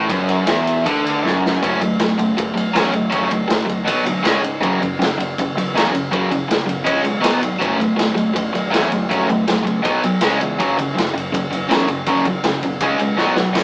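A rough rehearsal-room recording with a small-speaker sound and moderate stone room reverb carries this raw, menacing garage rock excerpt, where a crunchy, bright, double-tracked overdriven guitar riff sits up front over a growling fingered bass with its own overdrive in the background and a raw, saturated drum kit with a punchy kick, dark cymbals and a pumping room that enters at 0.1 seconds, plays a fill at 1.2 seconds, then drives through repeating F# minor, B and C# chords.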